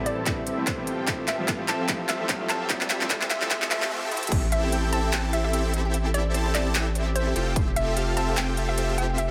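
A huge, detuned supersaw chord riff dominates this bittersweet future bass excerpt, pumping against the sidechain as a low-pass filter sweeps across it over the first 4.3 seconds of build-up. The track moves at 148 BPM in 4/4 with a half-time, swung feel in A minor, cycling between Am7 and Fmaj9. Underneath, a very quiet grand piano with audible action noise and an ethereal, warbling pad with vintage ensemble chorus hold the opening, while a faint riser climbs and a trap kit with crisp hats and handclaps plays a fill alongside a punchy, tape-tinged electronic kick. A hollow square-wave pluck carries the melody in the background throughout, darkened and spread by chorus and dub echo, and a short break arrives at 3.9 seconds. The drop lands at 4.3 seconds, bringing in a thick, saturated sine sub bass that sits up front with sidechain pumping and a bright, wave-folded unison pluck playing very quiet arpeggios.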